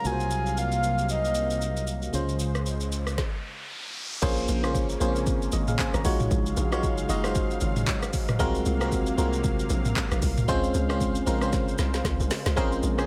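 A swung 115 BPM amapiano groove in 4/4 opens this hypnotic, soulful excerpt, driven by an overdriven, up-front afro-pop kit with a deep kick, woody snare, metallic hats, handclaps, rim clicks, shaker, toms and crash, while a glassy FM electric piano and a smooth, detuned analog pad carry the chords from Ab13/C through Dbmaj7, Bbm9 and Ebm11. A breathy, flute-like synth lead with vibrato sings only in the first 1.8 seconds over a warm fingered electric bass, and after a brief stop and an electronic riser, the drop at 4.2 seconds hands the low end to a hollow, bouncy log drum bass. A drum fill leads into a punchy, nasal chord stab with a filter sweep at the very end, all set in a digital ambience.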